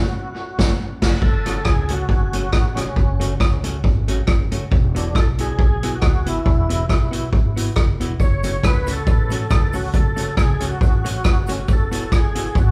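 Mischievous and driving, this ska excerpt at 138 BPM in F# minor swings lightly over F#m and Esus2 chords, opening on a band accent before a boomy, up-front street-band drum kit enters at 0.6 s beneath a full, lightly overdriven tonewheel organ melody with chorus vibrato, key click and tape echo, a dark, clean hollow-body jazz guitar with tube saturation and echo, a woody pizzicato upright bass in the background, and a grainy, very quiet cabasa arriving at 8.2 s, the band playing live together in one room with moderate large studio reverb.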